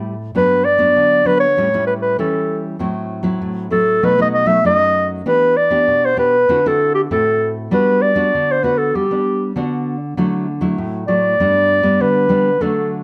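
A moderate large-studio reverb gives a roomy sound to this festive, playful samba at 98 BPM in G major, cut from a longer piece, with both instruments up front. A warm, classical-style clarinet carries the melody over a full-bodied, fingerpicked nylon-string guitar, moving through Gmaj7, A7, Am6, B7 and Em7. At 10.2 s the harmony shifts to Dadd9 and G as the clarinet takes a solo, with the guitar continuing beneath it to 13.0 s.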